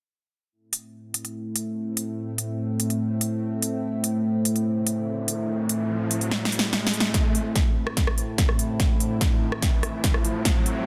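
Heavy and menacing, this short cut of wobble dubstep moves at 145 BPM in a half-time feel in A minor, opening with an overdriven big-room dance kit of crisp hats, rim clicks and a punchy snare at 0.7 seconds before a morphing, detuned wavetable pad enters with sustained chords, chorus and sidechain pumping as a filter sweep runs across it. An electronic riser arrives at 4.8 seconds, and a drum fill leads into a build-up at 7.1 seconds, where a punchy, layered electronic kick joins up front. The dense, heavily limited master sits in a moderate digital room reverb.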